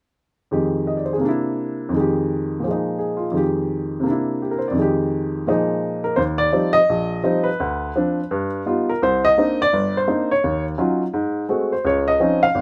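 A solo upright piano begins at 0.5 s, its woody, intimate tone sitting up front with the audible noise of its action. This is a swinging, playful jazz passage in Eb major at 169 BPM in 4/4, the eighth notes carrying a lilting swing feel. The opening phrase circles through Fm9, C9 and Bb7sus4, spanning the instrument from G1 up to F5. At 6.2 s the harmony opens onto Eb69 and moves through Dm7, Gaug7 and Cm9 before reaching Ebm9, Ab7b9 and Dbmaj9. The natural piano sound is framed by a light reverb, and this brief excerpt, taken from a longer piece, closes at 12.6 s.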